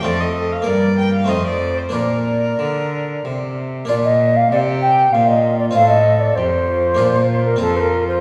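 All four parts sound together from the start of this short excerpt from a baroque-style sonata movement in Bb major: a dark, nasal gut-strung violin carries the melody from a distance, a pure wooden flute with vibrato and crisp attack sits up front on the second line, a bright Flemish-style harpsichord plucks the accompaniment, and a rich, reedy cello holds the bass. The mood is radiant and serene, moving at 95 BPM in 3/4 with uneven, rubato beats as the harmony circles between F, Gm and Bb, and a repeated opening section returns at 3.9 seconds. A wet recital-hall reverb surrounds the ensemble in a church or concert-hall setting.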